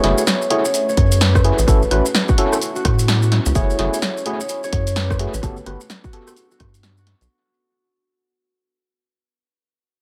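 An echo-heavy, lightly reverberant mix carries this bouncy, late-night two-step UK garage drop in F# minor at 128 BPM with swung sixteenths: a gritty, overdriven tine electric piano plays stabs up front, a mellow thumb-plucked concert harp rings out the melody through analog delay, an ethereal pad holds sustained chords in the background with sidechain pumping, and a rubbery, dark square bass pumps underneath, while an analog drum machine's hi-hat, rim click and punchy snare are joined by grainy maracas and, from 1.0 s, a layered, tape-warm electronic kick, before the drop fades out from 2.3 s.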